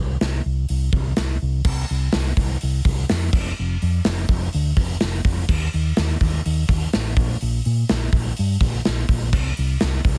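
Hard rock at 125 BPM in a straight 4/4, anthemic and swaggering, this short excerpt opens with a fingered electric bass that is dark, round and amped, sitting up front and ranging from F1 to Bb2. At 0.2 seconds a gated 80s drum kit joins with a punchy kick, medium-tuned snare, hi-hat, and bright crash cymbals, its big-room, airy, polished sound also placed up front, and the pair carry on together through a shift into a new section at 1.6 seconds until 10.2 seconds. The mix is dry, with a dense, heavily limited modern master.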